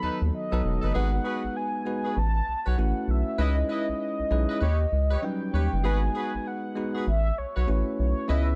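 A round analog bass sits up front in this short R&B excerpt, its deep, sustained tone and fast attack anchoring a flirty, upbeat groove at 98 BPM in 4/4 with a swung sixteenth-note feel. A bell-like tine electric piano rings out bright and clean as accompaniment, moving through chords such as G#m7, A69, C#m9 and D#7alt. Above it, a mellow horn-like synth lead carries the melody with a soft attack, vibrato and chorus, its wave-folded tone shaped by a filter sweep. A horn section adds jazz-style stabs with light vibrato. The production is dark and dry, with little reverb, keeping every part close and intimate.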